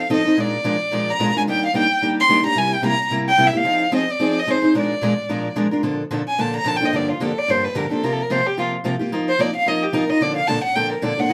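Heard live in a small, reverberant room, this lively, playful swing jazz fragment pairs a rich, intimate bowed violin melody with light vibrato, an airy sul tasto tone and a soft attack against a picked steel-string acoustic guitar accompaniment with audible finger squeak, before the violin takes a solo from 5.8 s over changes such as Bbmaj7, Gm7 and C7sus4.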